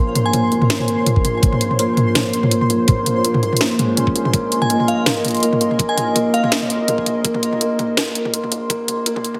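Half-time drum and bass at 165 BPM in Bb minor, tense and cinematic, this excerpt from a longer piece holds a single Bbm chord while building up across its nine seconds. A dark analog pad of detuned sawtooth and square waves with ring modulation sustains moody chords under chorus, vintage 12-bit sampler grit and sidechain pumping, while a felt-muted upright piano plays soft, intimate arpeggios through a low-pass filter that sweeps over the whole passage, with digital delay trailing behind. A pulsing, tempo-synced gated texture sits high at C6 with chorus and its own reverb, and a very quiet, deep 808-style sine bass holds long notes at the bottom. The drum kit arrives at 0.2 seconds with a cracking snare, bright hats and toms, overdriven and up front, and a knocking, tape-toned electronic kick joins at 1.2 seconds. A glassy, crystalline FM bell with chorus and delay flickers in briefly near the start and returns at 4.6 seconds for a short melodic phrase. 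The mix carries a moderate digital room and a heavily compressed, thin radio-like sound.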